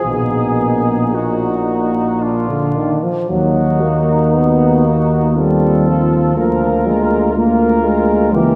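Steeped in a lingering church reverb and vinyl crackle, this brief, melancholic and yearning fragment of a hymn-like classical brass band piece in a rubato 3/4 sets a softly attacked trumpet section with light vibrato on the melody over a distant, roomy flugelhorn with vibrato on a second line, while a warm trombone and a mellow euphonium in the background fill out the accompaniment and an up-front, smooth-topped tuba anchors the bass.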